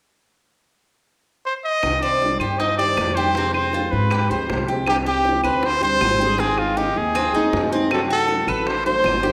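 A clear, vibrato-laden trumpet sings up front from 1.5 seconds in this nostalgic Cuban son and guajira excerpt, joined at 1.8 seconds by dark, thumb-plucked nylon-string guitar, woody pizzicato upright bass on gut strings, round low-tuned bongos and close, dry claves, with a bright, metallic Cuban tres picking arpeggios from 2.0 seconds, the ensemble heard inside a wet recital hall.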